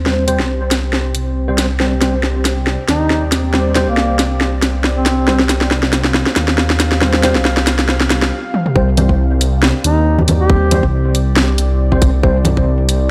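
Over a half-time 4/4 groove at 138 BPM with a 55% sixteenth-note swing, this meditative, heavy deep dubstep excerpt in C minor pairs a dark, rumbling detuned saw bass and overdriven garage drums with a cracking snare, under a warbling background pad holding sustained chords and worn, slightly out-of-tune tine electric piano stabs soaked in dub echo, while a mellow, scooped folk-style duduk with vibrato sings brief echoing phrases, first at 2.9 seconds during the build-up and again in the drop, and after a short break a tight, up-front electronic kick arrives with the drop at 8.8 seconds, joined by bright, saturated congas at 9.0 seconds, all within a dry, gritty hardware sound touched by light reverb.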